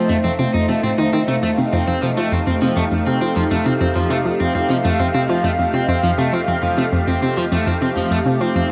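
A detuned sawtooth pad, a slightly broken-up electric guitar and a round, nasal analog pluck all sound together from the first moment of this short cut from a longer piece of ambient, sequencer-driven space music. The mood is mysterious and hypnotic, sitting on a single F7 chord in a straight 4/4 feel. The pad holds sustained chords with a soft attack and long release, its swirling, evolving tone colored by phaser and chorus. Up front, the twangy, picked guitar spins arpeggios through tape echo, while the bright, wave-folded pluck repeats a low riff with a fast attack and short decay, thickened by chorus and its own tape echo. A huge, wet ambient reverb with an 8.6-second tail bathes the whole space, and the passage ends at 8.7 seconds.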